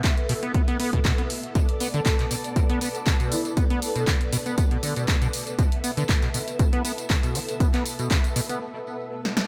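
Hypnotic and gritty, this acid house excerpt moves at 119 BPM in 4/4 with a light 16th-note swing, sitting in B minor over a Bm7 chord. A squelchy, resonant sawtooth acid bass carries the riff with overdrive, analog chorus and tape echo, its filter sweep giving it a liquid, decaying bite. Alongside it, a punchy electronic kick sits up front, joined by an analog drum machine of handclaps, hi-hat, snare and tambourine, both re-recorded in a small room. A lush vintage string machine holds sustained chords with a phaser, ensemble chorus and sidechain pumping, while a breathy, flute-like synth lead with vibrato and tape echo drifts in the background from 1.9 to 4.0 seconds. The echo-heavy mix carries light reverb and digital ambience. The kick drops out at 8.2 seconds, and the bass follows at 8.6 seconds as a break begins, before a drum fill at 9.2 seconds.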